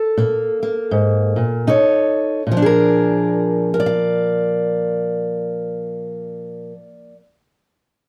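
Acoustic country blues in a rollicking yet laid-back mood at 76-83 BPM with a swung 4/4 feel, this short fragment features a solo fingerpicked steel-string acoustic guitar with a dark, woody tone from old strings, sitting up front in a reverberant studio sound, easing back in tempo through its opening 2.5 seconds with a stop in the first 1.7 seconds as it moves from Absus2 to B9 and lands on Bb7 at 2.5 seconds.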